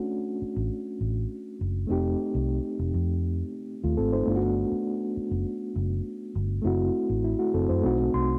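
A mellow, reedy electric piano opens this short cut from a lush 1970s-style soul piece, its medium tremolo and cassette tape coloring giving the harmony a smooth, cinematic glow as it moves from a rootless Bm9 through F9, Gmaj7 and F#m7b5. At 0.4 seconds a vintage muted fingered electric bass joins up front, dark, round and punchy with a foam-muted thump, under light reverb and a homespun cassette sound. The electric piano closes with a brief fill from 7.8 seconds over a tense B7b9.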